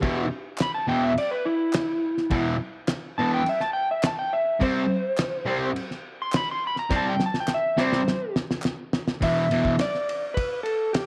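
A straight 4/4 pulse comes from a cloth-damped, thuddy drum kit with a fat snare, tight kick and dark cymbals, driving this raw, menacing garage rock excerpt and breaking into a fill before the new section at 9.2 seconds. Up front, a double-tracked fuzz guitar grinds out a bright, compressed low riff until 9.7 seconds, while a slightly broken-up slide guitar plays a fingered solo over it. Hollow, dry handclaps sit in the background, and a moderate spring reverb colours the room.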